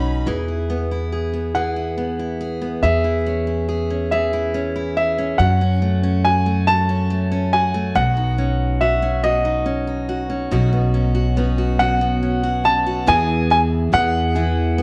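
This six-eight pop ballad moves slowly at 47 BPM in E major, with a romantic, heartfelt mood, and it is cut from a longer piece. A picked steel-string acoustic guitar carries the accompaniment throughout, and an upright bass sits up front underneath, its pizzicato tone woody and thumpy. At 1.5 seconds a clear baby grand piano enters with a polished, present melody in its upper register that stays prominent for the rest of the passage. The harmony moves from E through C#m/E and F#m to Badd9 before settling back on E at 13.1 seconds. A second full-bodied, jumbo-bodied acoustic guitar touches in briefly at the very opening and returns with quieter arpeggios from 10.5 seconds, joining the accompanying guitar's auditorium-style tone. A moderate echo chamber reverb and studio ambience give the sound a gentle sense of space.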